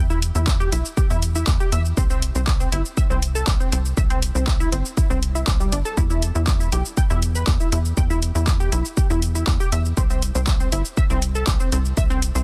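Melodic techno at 120 BPM in E minor, melancholic and driving, cut from a longer piece, where a tight, detuned sequenced synth plays chorus-thickened, delayed arpeggios with a sidechain pump over a punchy, nasal sequencer bass, an overdriven drum kit of handclaps, hi-hat and shaker enters at 0.1 seconds, a heavy layered electronic kick arrives at 0.5 seconds, and the chords move between Em and C5 in a dry, dense, heavily limited mix.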